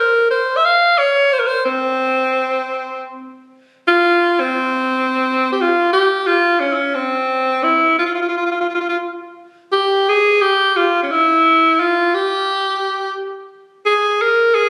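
Captured on a phone in a recital hall awash with reverb and given extra club reverb and compression, this melancholic, hypnotic Arabic passage in C maqam hijaz moves at 58 BPM in 6/8, cut from a longer piece, with a bright, up-front solo alto saxophone singing a pop-style line with vibrato between C4 and F5 before shifting into a new section at 5.9 seconds and carrying on to 14.7 seconds.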